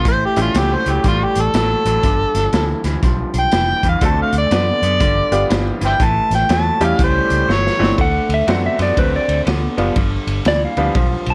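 A swung shuffle at 121 BPM drives this gritty, laid-back electric blues excerpt in D mixolydian, with a crunchy, saturated breakbeat kit and a round, foam-muted vintage bass underneath a lo-fi, slightly broken-up guitar riff played through a small old amp. An overdriven, amplified harmonica carries the melody up front with light vibrato and tongue slaps, while a bright, woody upright piano adds accompaniment. After a drum fill at 7.5 seconds, a clean, twangy lap steel takes a slide solo from 8.0 seconds, colored by slapback echo, all within a lightly reverberant room.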